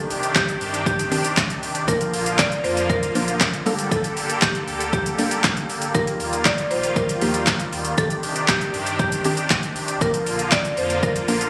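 Carefree and upbeat, this dance-pop excerpt moves at 118 BPM in a straight 4/4. A hard-mallet marimba carries the melody with a boxy, woody tone and digital delay, over a round, FM-tinged synth pluck treated with chorus, phaser and sidechain pumping, and a detuned supersaw swell that holds evolving, up-front chords through Cmadd9, Bb, Gmadd9 and Ebadd9. From 0.1 seconds an overdriven deep house drum kit of deep kick, punchy snare, metallic hats, handclaps and shaker sits forward in the mix, while a sine-like sub bass pumps in the background, all caught in a phone recording with light studio reverb and compression.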